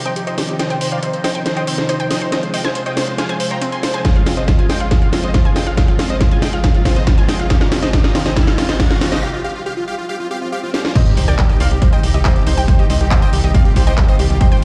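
A straight 4/4 pulse drives this euphoric, emotional uplifting trance build-up, cut from a longer piece: a lush, airy pad holds sustained chords beneath a huge, detuned supersaw melody with tape echo, while a punchy pluck arpeggio sits in the background, each pumping with sidechain; a techno kit of cracking snare, metallic hats, handclaps and crash fills ahead of a layered, up-front kick arriving at 4.0 s, and a very quiet riser, swell and sub drop carry through a break at 9.2 s, until at the drop at 11.0 s a clear, vintage grand piano second line enters, joined at 11.2 s by a tight, driving sawtooth sequencer bass, the mix bathed in large studio reverb.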